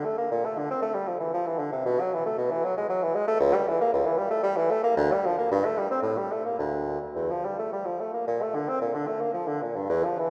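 Flowing and solemn, this brief fragment of a baroque-style classical fantasia gives the unaccompanied bassoon the whole stage, moving in a supple three-beat rubato. The bassoon sounds warm with a light vibrato, ranging from C#2 to C4 and sitting up front, though the church acoustic lends it a distant, roomy air. A long, wet reverb blooms around every phrase, and the solo line is cut off at 10.3 seconds.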